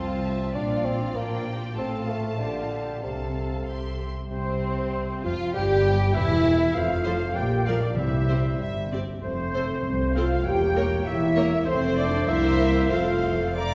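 A graceful, lively classical-period orchestral movement in F major at 97 BPM in a rubato 2/4. Focused, vibrato-rich violins carry the melody over a lush second violin line, a mellow bassoon, background violas and a bass of cellos and distant, expressive double basses; at 4.3 s an airy flute, a vintage-toned clarinet and a roomy oboe add second lines as a tight French horn section holds sustained chords; and soft-mallet timpani enter on a round, very quiet C3 at 8.0 s, all set in a wet recital hall heard from further back in the room.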